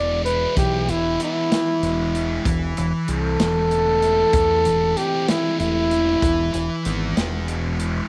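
Psychedelic rock in a slow 6/8 at 64 BPM, dark and mysterious, this excerpt features a mellow, smooth-topped flugelhorn carrying an up-front solo melody with slapback echo from the start until 6.8 seconds, moving from E through Am/E and back to E. Beneath it, a thick, double-tracked fuzz guitar plays a riff through distortion and phaser, while a growling, overdriven fingered electric bass holds the low end. A vintage acoustic kit of hi-hat, punchy kick and medium-tuned snare enters at 0.3 seconds with a small-room, rolled-off top, all set in light reverb.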